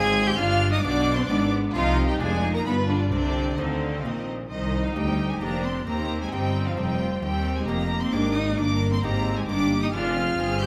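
A straight, driving 3/4 pulse at 132 BPM propels this stormy C minor passage from a baroque-style concerto movement with solo episodes, cut from a longer piece, as a focused, vibrato-rich violin section carries the high melody alongside an expressive solo cello that sings with portamento and soft attacks. A second violin line and a viola section fill the middle, while a delicate, fingerpicked gut-string lute sits in the background, and a double bass section pairs with a more distant cello section to anchor the bass. The whole ensemble plays throughout in a moderate scoring-stage reverb, with chords moving from G through C minor and G7 before settling toward E-flat and F minor.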